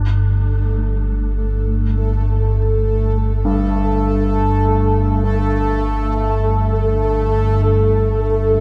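A deep, rumbling drone of detuned sawtooth and triangle tones sits up front from the start of this ominous, unsettling dark ambient fragment cut from a longer piece; at 0.4 s a bubbling, resonant sawtooth texture with random filter steps and chorus joins it, and at 3.4 s an intimate concert grand piano with audible action noise enters with low arpeggios through a delay, the whole mix set inside a huge, dark wash of reverb.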